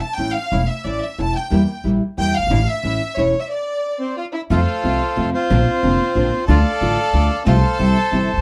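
A rubato tango pulse in 3/4 at 181 BPM drives this nostalgic, passionate fragment, cut from a longer piece and set in a moderate club ambience with a dark, warm production. Fingerpicked nylon-string guitar carries the accompaniment, and a woody, thumpy pizzicato upright bass on gut strings holds the low end up front. A clear, biting violin section with light vibrato plays a bowed second line. In the background, a shadowy chamber string section with a gut-string, period-style tone adds stabs. The reedy bandoneon enters up front at 4.0 s, during a stop that runs from 3.5 s, and takes the melody as the music moves into F major at 4.5 s, while finger squeak on the guitar and the earthy edge of the violins add detail to the sound.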